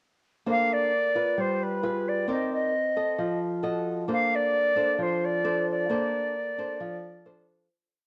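Lightly reverberant cassette tape sound frames this short, romantic and sunny bossa nova piece, where an airy, crisp-edged silver concert flute spins a motif-based melody in sentence-like phrases over a small, fingerpicked nylon-string guitar playing thumb bass and syncopated plucked chords through a Bbmaj9 to G7b9 to Cm9 to F7b9 turn, before the whole recording fades out from 5.9 seconds.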